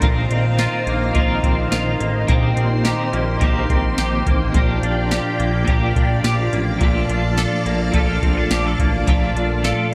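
Dream pop at 106 BPM in Bb major, floating and blissful, this brief excerpt rests on a pedal of Bb beneath chords moving from F7sus4 through Cm, Gm7 and Bbmaj7, all bathed in a lush hall reverb. A twangy twelve-string electric guitar shimmers with tremolo and chorus while a hollow-bodied semi-hollow guitar picks clean arpeggios through chorus and tape echo, over mellow, slow-attack string-machine chords thickened by ensemble chorus. A fat, detuned sawtooth bass anchors the bottom of the dreamy mix alongside a soft vintage rhythm box, dry and tape-warm, with a deep kick, crisp snare, metallic hats and tambourine.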